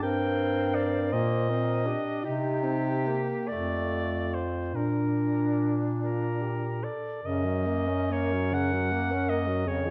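In a rubato 6/8 lilt of roughly 45-56 BPM counted in dotted quarters, this tender, lyrical classical piece for single-reed quartet unfolds in Bb major, cut from a longer work. A mellow soprano saxophone sings the melody with light vibrato over the alto saxophone's soft-attacked, smooth-topped second line and the tenor saxophone's vibrato-laden accompaniment, while an up-front, bright bass clarinet anchors the bass, with the soprano, tenor and bass clarinet all carrying a vintage tone. The harmony moves from Cm7 through F to Bb before shifting to F# as a new section begins at 7.2 s, all in a dark production bathed in recital-hall reverb.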